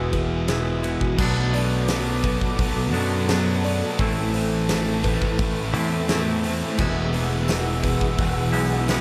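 Shoegaze-tinged dream pop rock at a mid-tempo 86 BPM in E mixolydian, this blissful, hazy cut-out layers three background riffing guitars (a dark, thick fuzz part with analog chorus, a crunchy overdriven part washed in reverse reverb, and a bright, double-tracked distorted part) over a growling, punchy overdriven fingered bass and a huge, up-front arena drum kit with a fat snare and punchy kick, while a very quiet, shimmering octave-doubled twelve-string acoustic picks arpeggios, a deep, detuned analog pad holds slow-blooming chorused chords, a jingly tambourine joins at 1.9 seconds, and the harmony moves from Eadd9 through Bm7 and Amadd9 back to Eadd9.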